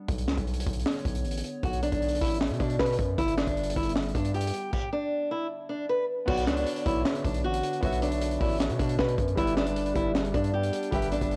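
A boxy, fingerpicked acoustic archtop guitar carries the melody up front from 1.6 s in this brooding, melancholic half-time trap excerpt at 155 BPM in B minor, set over a warbling, detuned lo-fi pad in the background, a heavy, punchy 808-style bass, and a crunchy, saturated breakbeat kit with a high-tuned snare and dark cymbals, while a mellow baby grand piano joins at 6.3 s, all colored by gritty tape and transformer character.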